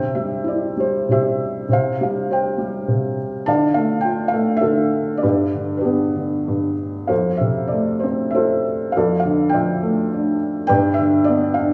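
A gently rubato waltz-time lilt carries this sunny, lyrical classical passage for solo felt-muted upright piano, heard from 0.0 to 11.7 s and spanning F2 to A5. The piano sounds soft, mellow and intimate, sitting up front while a wet recital-hall reverb in a church or concert-hall space adds a small-room glow around it. Its harmony moves from C through Csus4, Dm, G and F to Dmadd9/F before resting on G7, as this fragment is cut from a longer piece.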